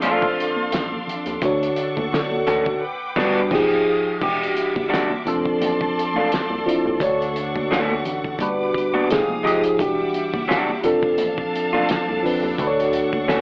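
A brief horn stab opens this smooth, soulful neo-soul R&B excerpt at 86 BPM with a swung sixteenth feel, over a mellow, slightly out-of-tune tine electric piano with phaser, a warm, slightly broken-up electric guitar second line with spring reverb, and lush, distant bowed strings holding sustained chords. A rubbery, hollow square bass slips in underneath at 0.7 seconds, while a muffled, cloth-damped drum kit with a fat snare, handclaps and dark cymbals sits beside high-tuned, damped congas, and the band hits an accent from 2.8 to 4.2 seconds as the chords move through F6, Dmaj7, Gmaj7, Fm9 and Em9. The whole mix is steeped in worn, warbling cassette tape, vinyl crackle, pitch drift and an AM radio sound under light reverb.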